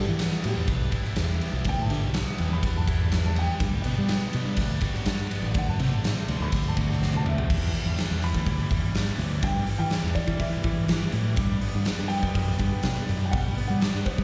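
A dark, woody upright piano carries the melody with slapback echo and analog delay over a very quiet, buzzy vintage combo organ holding sustained chords, a biting, bright guitar riff swirled in lush chorus, a raw garage guitar riff set back in the mix, and a growling, overdriven fingered bass up front, before a big, punchy rock drum kit in a bright stone room joins at 0.2 seconds, driving this moody, bittersweet indie rock excerpt in E minor at 123 BPM through Em7, Gmaj7 and D7 changes, with a drum fill at 7.0 seconds leading into the next section, all heard as a live gig through the venue's PA with small-room and recital-hall reverb.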